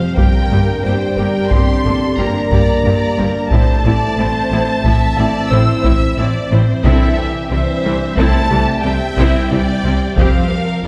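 Lush violin sections open with a smooth, vibrato-rich melody over a second, focused line, while dark French horns and a warbling, lo-fi tape-like pad with chorus hold sustained chords in this relentless, futuristic hybrid orchestral and electronic film cue in 5/4. From 0.2 s, heavy-stick taiko drums sit close and prominent, and violas, intense cellos and distant double basses fill the accompaniment and bass in the background as the harmony moves from Gm through Am and C to Fsus2. A soft, felt-muted upright piano adds a very quiet, mellow texture from 2.2 s, and the orchestra is heard from further back in a reverberant scoring stage.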